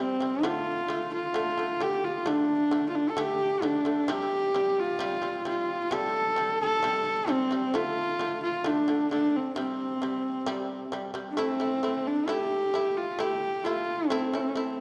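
Mongolian folk in a traditional vein, this slow 66 BPM piece in 4/4 feels vast and proud, cut from a longer work. A single horsehead fiddle carries the melody up front, its husky, earthy bowed tone shaped by light vibrato, portamento and an airy bow, while a bright, buzzing shamisen plays percussive plectrum-plucked arpeggios at a lower level. A wet recital hall reverb surrounds the dark, warm production, and the music moves into a new section at 11.4 seconds.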